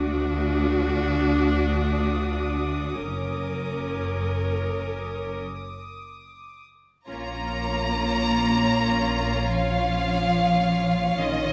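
This excerpt from a suspense film score opens in free time with bowed string sections, as a focused cello section, a rich double bass section and a clear, close viola section sit beneath a distant, lush violin section holding a high texture, while the harmony moves from D to F#. After a break at 5.4 seconds, the music settles into Bb minor at 7.1 seconds, where an up-front violin section carries the melody with vibrato and a smooth top, and a more distant violin section plays a second line. A wet recital-hall reverb surrounds the ensemble, lending the mysterious, ominous passage a spacious air.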